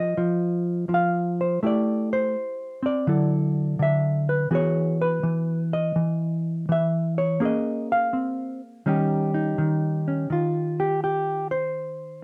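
Warm and playful, this brief solo jazz fragment from a longer piece swings its eighth notes as a clean, fingered electric hollow-body guitar sits up front with a dark tone, moving from an unaccompanied opening through Am7, Dadd9, Emaj9, Bbm7 and Eb7 in a solo passage that runs to 10.3 seconds before a short closing section lands on Eb69, all inside a moderate club-room reverb.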